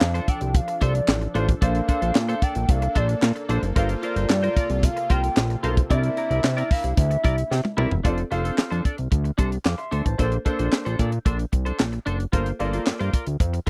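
Danceable and feel-good, this excerpt of early-eighties boogie funk in F major moves at 112 BPM over a straight 4/4, driven by a tight, dry acoustic funk kit with a high-tuned snare, handclaps and toms, and a fat, saturated analog bass with a filter sweep, both sitting up front. A twangy, compressed clean electric guitar riff with analog chorus runs throughout, a smooth vintage grand piano enters at 1.3 seconds, and a hollow, woody clarinet-like synth lead carries the melody over a brassy, detuned analog pad in the background until the lead stops at 7.7 seconds and the pad at 8.0 seconds. A drum fill at 7.5 seconds leads into the second section as the chords cycle through F6, Bbmaj9, Gm11 and C9, all captured in a close, dry 1970s-style studio sound.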